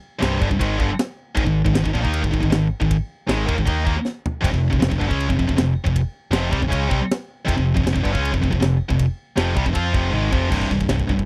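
Two bright, high-gain distorted electric guitars drive a relentless, epic heavy metal riff in straight 4/4 over a growly, punchy overdriven picked bass and a tight, polished acoustic drum kit with a high-tuned snare, moving from Cm through Ab5 and F5 to C5, with drum fills at 4.0 and 10.1 seconds, all captured in a dry, close 1970s-style studio sound.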